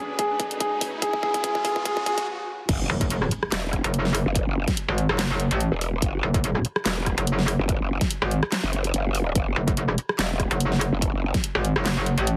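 Menacing and heavy, this heavy wobble dubstep cut opens with a build-up in which a warm grand piano melody with delay sits over a lush, very quiet supersaw pad, a rising electronic riser and a drum fill from the dubstep drum kit and punchy electronic kick drum. Then, after a brief stop, the drop lands at 2.7 seconds with an impact, a growling, formant-filtered growl bass and a huge snare in a half-time feel. A metallic FM wobble bass joins at 2.9 seconds, and both basses are saturated and up front, each with chorus and overdrive. The mix is heavily compressed into a radio-like sound with light digital ambience.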